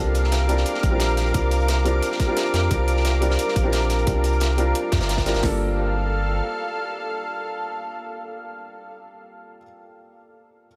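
Soaked in a cathedral-sized reverb, this dreamy excerpt from a longer liquid drum and bass piece feels melancholic and rolling, with a straight 4/4 pulse. A soft, felt-muted upright piano sits up front, intimate and mellow, its accompaniment trailing into a diffuse ambient delay, while a lush, bright pad of detuned sawtooth and square-wave voices holds slow-blooming chords, shimmering with chorus and pumping against the sidechain. Underneath, a round, deep sine sub bass carries the low end from the start. Three drum layers stack together: a tight, produced electronic kit with a cracking snare, crisp hats and a tape-warm sheen; a gritty, mid-forward acoustic breakbeat kit of hi-hat and medium-tuned snare, high-pass filtered with a rolled-off top and a small room around it; and a compressed, pitched-up sampled hi-hat tucked in the background. The harmony moves from C9sus4 to Gm9 at 5.4 seconds, the drums fall away by 5.5 seconds, and the bass drops out at 6.4 seconds, leaving the pad and then the piano alone in the reverb wash until 10.7 seconds.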